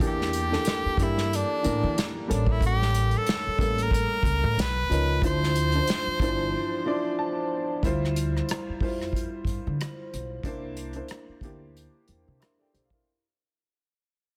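Soulful and introspective, this neo-soul R&B excerpt moves at 92 BPM in D minor with a light 16th-note swing. An edgy tenor saxophone carries the melody with light vibrato until 7.2 seconds, over a slightly detuned upright piano with long sustain, woody gut-string pizzicato upright bass, and an airy acoustic kit played with bundle sticks and a punchy kick. After a break where the piano adds a fill, the band fades out under chords such as Dm11 and C9, all set in a small room with a dense, heavily limited modern master.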